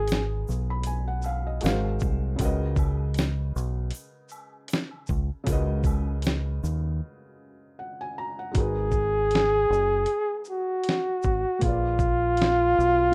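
A rough home-demo mix with a moderate studio reverb frames this nostalgic, reflective lo-fi hip hop excerpt at 78 BPM in G# dorian, where a soft, felt-muted upright piano with audible action noise and plate reverb plays throughout over a dark, round, punchy dub electric bass and a gritty, compressed sampler-style drum kit with a thumpy kick, while a distant tube shaker and woodblock sit in the background until 6.8 seconds, and after a break a breathy, mellow flugelhorn with vibrato and scooped notes takes up the jazz-style solo melody from 8.6 seconds over chords moving from G#m11 to A#7b9.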